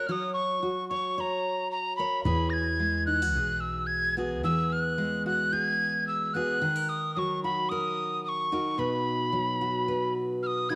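A straight 4/4 pulse at 110 BPM carries this hopeful, pastoral acoustic folk excerpt, where an airy, chiffy tin whistle with vibrato and a slapback echo sings the melody up front over a full-bodied fingerpicked steel-string guitar with audible finger squeak, joined at 2.3 s by a growly, woody pizzicato upright bass, all set in a small room with moderate echo-chamber reverb as the chords move from F# through Eadd9 and D#m to B.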